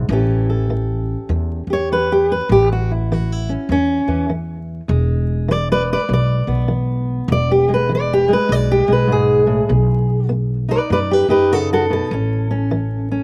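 A dark, fingerpicked steel-string acoustic guitar sits up front and takes a solo through the whole 13.2-second clip, carrying a rollicking, gritty acoustic country blues with a swung feel over A7, E7 and B chords, while a woody, thumpy pizzicato upright bass holds down the low end close by, all in a dry outdoor sound dusted with vinyl crackle.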